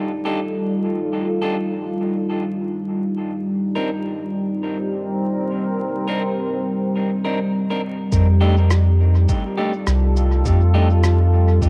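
A swung 4/4 pulse at 103 BPM underpins this short, deep and meditative ambient dub cut from a longer piece. A dark, evolving pad holds sustained chords from the start, its detuned sawtooth layers and sub octave softened by chorus, built-in reverb and cassette tape into a moody, mellow bed that sits up front, moving from F13 to Cm9. From 0.3 seconds a twangy, slightly broken-up electric guitar adds bright picked stabs, set back in the mix and trailed by spring reverb and dub echo. At 8.1 seconds the second section arrives as the chords return to F13 and a round, soft sub bass enters prominently, joined by a thumpy, muffled, pitched-down sampler kick and a faint shaker and rim click carrying dub echo. The whole piece has the hazy feel of a home cassette recording in a lightly reverberant room, with vinyl crackle beneath.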